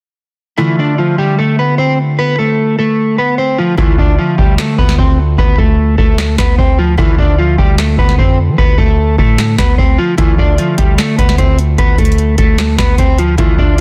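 Hip hop trap at 150 BPM in a half-time feel, brooding and menacing in D dorian, opening on a dark, slightly broken-up electric guitar melody with subtle chorus and digital delay over bright, ringing fingerpicked concert harp accompaniment. At 3.8 seconds an up-front, overdriven analog drum machine arrives with a deep kick, crisp snare, handclaps and metallic hi-hats that stay muted until 10.2 seconds, joined by a boomy, sine-based 808-style bass with a noise layer and fast attack. Light reverb and digital ambience surround a dense, heavily limited modern master, and the piece is cut from a longer work.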